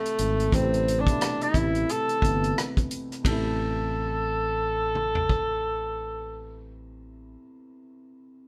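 R&B with a neo-soul lean, this short, introspective excerpt at 88 BPM sways with a swung 16th feel in A minor on an Am7 chord, led by an up-front tenor saxophone with a vintage, lightly vibrato-touched jazz voice, over a dark, woody upright piano that plays on alone after the other parts stop and runs to 8.5 seconds, a growly fingered electric bass, and a soul drum kit with dark cymbals, a tight kick and a rolled-off top, all heard as a band playing live in one room with moderate reverb.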